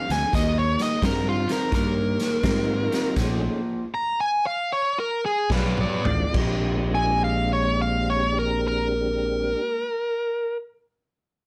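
A smooth, overdriven lead guitar sits up front in this laid-back, rollicking electric blues shuffle in Bb mixolydian, swinging at 70-87 BPM as it slows through its opening, joined by a twangy, slightly broken-up riff guitar through a small old amp, round fingered bass, a gritty, saturated garage drum kit that plays a fill before stopping at 6.6 seconds, and a mellow, percussive tonewheel organ with slow rotary speaker and chorus vibrato entering at 2.4 seconds, inside a moderate club reverb.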